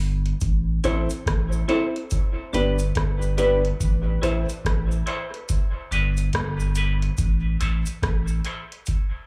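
A slow, swung 4/4 groove at 71 BPM rides a booming analog drum machine, its deep kick, metallic hi-hats and rim clicks sitting up front with a small-room character, joined at 0.4 s by a faint, filtered cabasa. A round, sustained sine sub bass holds low between G1 and A1, while a clean, picked semi-hollow electric guitar with tremolo and short-sustain piano stabs both pass through a high-pass filter into dub echo over an Am to G vamp in A minor. This meditative, hypnotic dub reggae excerpt, cut from a longer piece, has an echo-heavy mix with light digital ambience and a filter sweep running from 0.4 s onward.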